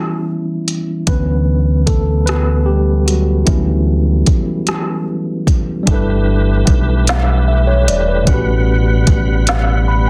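A mellow, clean tine electric piano takes the lead at the start of this sultry, late-night slow six-eight R&B excerpt, joined at 0.7 seconds by an up-front electronic drum kit with a soft kick, woody snare and smooth hi-hats, and at 1.1 seconds by a dark, round and punchy fingered dub bass. At 5.9 seconds a full tonewheel organ enters with sustained chords, its chorus vibrato, key click and fast rotary speaker colouring the harmony as it moves from G69 to A13, before the electric piano adds a brief closing fill. Light reverb and a dense, heavily limited modern master keep the sound close and thick.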